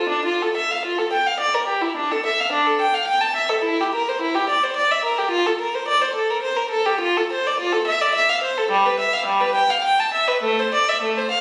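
A baroque-style classical suite movement for unaccompanied violin, this short, radiant excerpt moves in a dance-like 3/4 at 106 BPM in F major, its beats uneven and shaped with rubato. A single violinist plays throughout, close and up front, with a nasal, reedy gut-string tone, light vibrato and an airy bow in period style, ranging from G3 to A5. The playing sits in a wet recital-hall reverb, captured on a phone in the room, and the passage is cut from a longer piece.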